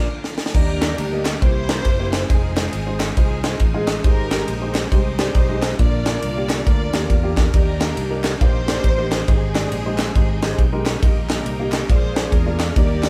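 Hopeful and soulful, this uptempo gospel excerpt swings along at 138 BPM in Eb major, opening with a drum fill and band accent before the strings take up the melody at 0.5 s over a chord run from Ebmaj7 through Fm7 and Abmaj7 to a closing Bb7. A crisp fusion kit sits up front with bright cymbals, a high-tuned snare and punchy kick, while a punchy, amped fingered bass and a woody upright piano with audible action noise carry the groove, and a full tonewheel organ with slow rotary sways very quietly underneath. Lush, bowed studio strings sing the line, a sul tasto string chord sounds briefly at the start, and distant group handclaps join in the background from 0.8 s, all in a light room reverb that feels like a band playing live.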